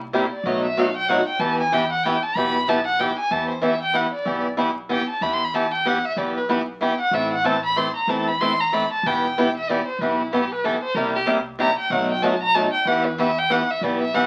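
Acoustic string swing in the jazz manouche style, this bittersweet, virtuosic passage is cut from a longer piece and moves in a swung 3/4 lilt. The warm, bowed violin carries the melody as a solo throughout, sitting close and up front with vibrato, a soft attack and expressive portamento slides. Beside it, the picked swing-style acoustic guitar provides bright, boxy accompaniment on fresh strings, also placed up front. Underneath, the pizzicato upright bass on gut strings adds a dark, woody thump from the very start, kept in the background. The harmony circles through minor chords with dominant turns, shifting to Am at 7.1 seconds and landing back on Em at 12.9 seconds. A wet studio reverb surrounds the trio, and the sound of a very old 78 rpm record with vinyl crackle gives the whole an aged patina.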